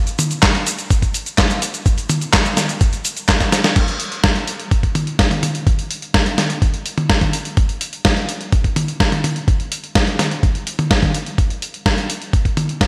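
A straight 4/4 pulse at 126 BPM drives this italo disco excerpt, cut from a longer piece, with a bittersweet yet danceable mood. A dusty soul sampler-style drum kit opens at 0.1 seconds, its gritty, compressed sound built from hi-hat, handclaps, cabasa, crash cymbal, toms and a medium-tuned snare, all placed up front and treated with studio and gated reverb. A thumpy electronic kick drum joins at 0.4 seconds, sampler-style and compressed, sitting close in the mix with its own studio reverb. A drum fill from 3.4 to 3.8 seconds marks the move into the second section, which carries the groove through to the end. The whole production has a bright 1980s-style digital sheen, wrapped in a lush hall reverb with a 2.2-second decay.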